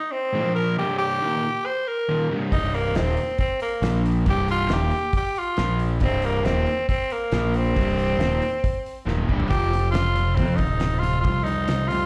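A raspy, growling tenor saxophone opens this gritty, driving classic rock excerpt at 0.0 seconds. Moments later, an overdriven semi-hollow guitar joins with a double-tracked, picked riff over chords that move between Bb5 and C minor. At 2.5 seconds the band kicks in at a straight 138 BPM in 4/4 and C dorian: an up-front fingered bass with a bright, overdriven growl, and a damped 70s drum kit with a fat snare, tight kick and rolled-off top. The sax carries the lead with light vibrato and an edgy pop-style bite, sitting forward in the mix alongside the guitar and bass. A shouting tonewheel organ, lightly overdriven through a fast rotary speaker, arrives in the background at 9.2 seconds with sustained chords, just as a drum fill leads into a shift to F. The sound is a live club gig heard through the venue's PA, with a touch of studio reverb blended into the room.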